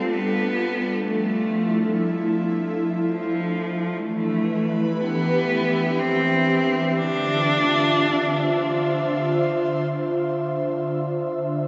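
This ambient excerpt moves at a slow 61 BPM in 3/4, settled in D dorian with a reflective, serene mood. A soft, breathy pad carries sustained chords from the start through 11.7 seconds, its detuned sawtooth and triangle tones blended with a noise layer, a moving notch and chorus, and it blooms in with a slow attack and long release. Up front alongside it, a single bowed cello sings a warm, expressive melody with vibrato and portamento, its tone touched by tape echo and set at a distance, until it stops at 8.9 seconds. The harmony drifts from G7sus2 through Em7 to Dm9, and at 9.9 seconds a new section settles onto Dm7 with the pad sounding alone. The excerpt sits in a huge, wet reverb with a decay of 8.6 seconds, and its dark, softened top end keeps the sound hazy.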